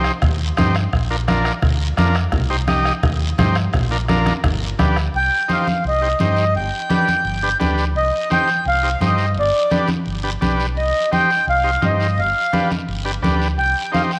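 A lush hall reverb fills this home cassette recording, a fiery, passionate cumbia clip cut from a longer piece, moving at 171 BPM in 4/4 with a straight feel in C minor. A vintage combo organ with light vibrato and a buzzy, cassette-worn tone carries the accompaniment throughout, while a dark, round fingered electric bass sits up front in the low register. Percussion comes from a raspy guiro heard close, thick-skinned congas in a live room, and a soft-beaten bombo in a small room that plays only until 5.1 s. At that point the harmony turns to C harmonic minor, and at 5.2 s a reedy accordion with slow beating enters up front to take the melody in a high register. The chords first move between Cm and Bb before landing on G, then alternate between Cm and G, closing through G7 back to Cm at 13.6 s.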